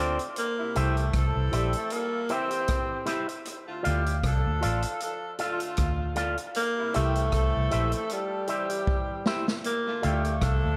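Roots reggae at a slow 78 BPM in 4/4 with a gentle swing, serious and meditative, in a short excerpt that moves between C and Dm. A distant, roomy tenor saxophone with light vibrato carries the melody over a dark, foam-muted fingered bass sitting up front, while a clean electric guitar through an envelope filter fills in the accompaniment and a mellow horn section enters at 0.6 seconds with a punchy second line, the horns and guitar trailing tape echo. A vintage drum kit with a punchy kick, rim click and rolled-off top rides on dub echo and plays a fill from 8.9 to 9.6 seconds, all in a light reverb.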